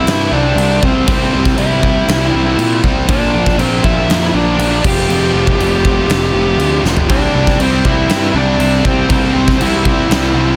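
A dark, fuzz-drenched lead guitar melody opens this cathartic, restless stretch of quiet-loud alternative rock at 120 BPM in C mixolydian, over a round, punchy overdriven bass up front and two background guitar riffs, one fuzzy and compressed, the other bright, tight and double-tracked. A huge acoustic arena drum kit with a fat snare, punchy kick, crashes and toms drives the C, Bb and Fsus2 chords, rolling into a fill at 6.8 seconds. A very quiet, cranked stack guitar riff slips in at 7.1 seconds as the harmony returns to C, all within a dense, heavily limited modern master.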